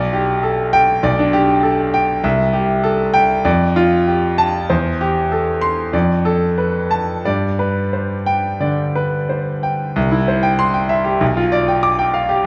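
A brilliant, up-front grand piano carries this stormy, passionate classical study alone, ranging from B1 to D6 in C major at a rubato 87-102 BPM in 4/4. Its harmony moves through inversions such as G/B, Dm/F and C/E before settling on G. At 10.0 s a new section returns to C and turns toward G7/B. The piano's natural, bright tone sits in a wet recital-hall reverb within a dark production, and the 12.5-second clip is cut from a longer piece.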